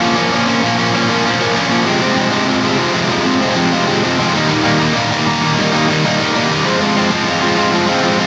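A bright, up-front, double-tracked electric guitar, carrying distortion and tape echo in a moderate studio room, plays alone through this aggressive, angry punk fragment, picked over a Bbm, Fm, Eb and back-to-Fm progression that runs its full 8.3 seconds.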